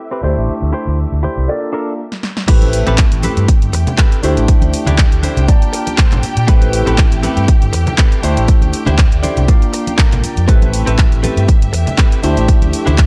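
A sensual, nostalgic filtered disco house excerpt, where a dark, boxy grand piano with phaser and 12-bit grit, bowed chamber violins with vibrato, a clean, compressed direct electric guitar riff and an overdriven, up-front fingered bass pump through a low-pass filter sweep over D9sus4, Bbmaj7 and Am9, until a brief stop at 2.0 seconds and a drum fill at 2.1 seconds give way at 2.5 seconds to a drop with a punchy layered kick, analog drum machine snare, claps, hi-hats and crash, ringing maracas and congas in the background, and a guitar fill at 9.0 seconds.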